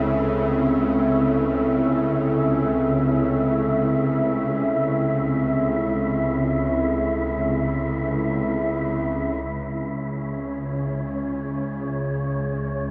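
In a vast, echoing space drenched in long reverb, this ominous dark ambient drone excerpt drifts in free time, its chords moving from A minor to C# minor at 9.4 seconds. A tense, nasal, string-like bowed drone with vibrato sits bright and up front in the low register, while a deep, moody analog pad with subtle chorus holds detuned sustained chords above it. An airy, breathy, wind-like tuned noise texture hovers in the upper range, all three parts fading in with slow attacks and sustaining throughout.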